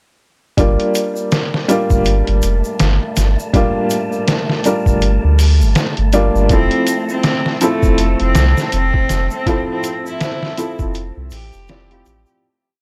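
Brooding, smoky trip hop in which a muffled, pitched-down sampler breakbeat with a thumpy kick and a round sub bass riff sit up front beside woody upright piano chords carrying tremolo and tape echo, while a background tube shaker and an airy, wind-like noise texture hover behind, a distant bowed cello enters with a repeating riff at 6.5 seconds, a detuned, chorused dark pad joins at 7.6 seconds, and the whole gritty, dry piece fades out from 8.5 seconds.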